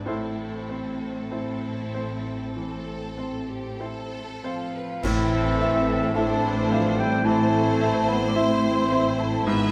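Close, detailed microphones in a moderate concert hall capture this tragic, brooding romantic excerpt for piano and orchestra in A minor, moving with rubato at 47-55 BPM in 4/4. A brilliant grand piano carries the melody beside lush, vibrato-rich violins, while a second violin line, background violas and cellos, double basses, and warm French horns fill out the harmony, and a cymbal swell with dark clash cymbals and concert bass drum sounds until 7.2 seconds. From 4.4 seconds a distant cor anglais and a hollow, very quiet flute add second lines, and at 5.0 seconds, where the ensemble accents, a mellow clarinet and bassoon, a smooth-topped trumpet playing stabs and a barely audible trombone section join.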